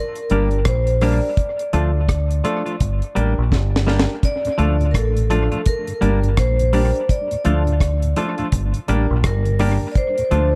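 A ringing vibraphone struck with hard mallets opens this short cut from a longer roots reggae piece, its metallic melody in D minor carried by tape echo and a medium motor vibrato in a boxy small room. Within moments a deep, dry reggae kit arrives up front, with a tight kick, a high-tuned snare, rim clicks and hi-hat softened by a rolled-off top and analog delay, while a round, dark dub bass played with the fingers sits loudest in the mix. A clean, compressed semi-hollow guitar adds hollow-body accompaniment through tape echo, and a woody upright piano with long sustain places stabs in the background. The tempo holds at a swung 84 BPM as the harmony alternates between Gm and Dm, and a drum fill at 3.5 seconds leads to the entry of a soft, flute-like tonewheel organ at 4.4 seconds, shaded by chorus vibrato, a slow rotary speaker and analog delay. The mood is serious and meditative, wrapped in light reverb and an echo-heavy mix.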